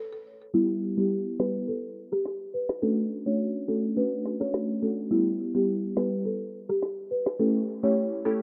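Sultry and bouncy, this short dancehall cut at 105 BPM in E dorian opens with a half-second break, then a buzzing, woody marimba carries the melody with delay over a glassy, detuned wavetable pluck with chorus and a filter sweep, both from 0.5 s, while a layered electronic snare and rim click joins at 1.4 s, over chords of Em, Dmaj7 and A7 in a light digital ambience.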